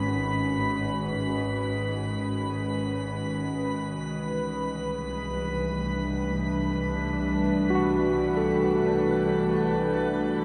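Floating in free time, this serene ambient fragment, cut from a longer piece and tuned to A4 = 442 Hz, drifts from a B69/G# chord to Cmaj7 at 4.0 seconds. A warbling, detuned tape-like pad sits up front with slow-swelling, long-releasing sustained chords, its nostalgic lo-fi tone softened by chorus and its own reverb. Beneath it, a dark studio double bass section holds the low end with bowed, expressive vibrato, while a glassy harmonics texture hovers high with drifting sine overtones, also chorused and reverberant, and fades out across the whole passage. At 7.7 seconds a worn, slightly out-of-tune tine electric piano enters up front with lightly overdriven arpeggios through a combo amp, trailed by a diffuse ambient delay. A wet shimmer reverb with a 9.4-second tail bathes the mix in a calm, mellow haze.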